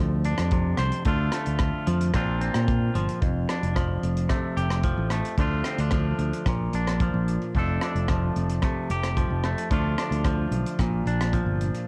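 Highlife guitar band in a carefree, warm mood and straight 4/4, with a clean, compressed semi-hollow electric guitar picked up front over a round, punchy fingered electric bass, while a tight funk drum kit of hi-hat, kick drum and rim click, natural and small-roomed with a cassette tape tinge, enters at 0.2 seconds as the harmony cycles through F6, Dm and Bb in this home cassette recording with studio reverb.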